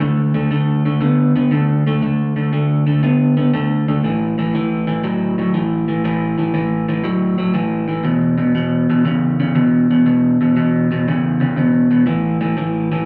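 Blues with a rollicking, laid-back swing, this short excerpt cut from a longer performance features a lone electric guitar played through a small old amp. The guitar sits up front, its picked tone slightly broken-up and compressed, with a touch of spring reverb around it. It stays in a low register, from E2 to B3, moving through power chords on D, A and E before landing back on A at 12.1 seconds. The sound comes from a live gig heard through the venue's PA, wrapped in a light club reverb. The guitar plays alone from the opening through 13.1 seconds.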